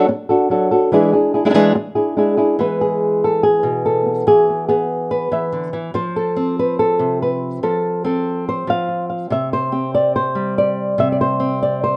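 A lone flamenco guitar opens the recording on its own, sounding dark and thumb-plucked as it moves from a D/F# chord into E7. The mood is fiery yet mournful, set in a straight 4/4 feel that gives the guitar a steady footing. At 2.6 seconds the music settles onto E and then shifts to F at 5.9 seconds, a turn that deepens the sorrowful flamenco colour before the passage reaches a bare C5 at 9.3 seconds. The guitar sits up front, ranging from a low B2 to a high F5, captured by close, detailed microphones with a light reverb around it. Cut from a longer piece, this twelve-second fragment ends while the guitar is still playing.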